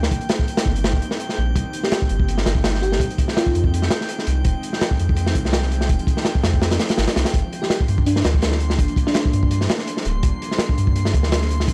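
A crunchy, saturated breakbeat drum kit of kick, medium-tuned snare and hi-hat drives this raw, atmospheric drum and bass excerpt at 166 BPM with a light swing, up front in a small, dry room alongside a deep, round dub sub bass. Behind them an airy, breathy pad carries sustained Cm7, Fm7 and Gm7 chords with chorus and vintage sampler grit, while a glassy texture of drifting overtones shimmers high above in its own reverb. A bell-like FM electric piano with tremolo and dub echo plays brief melodic phrases at 1.8 and 7.6 seconds.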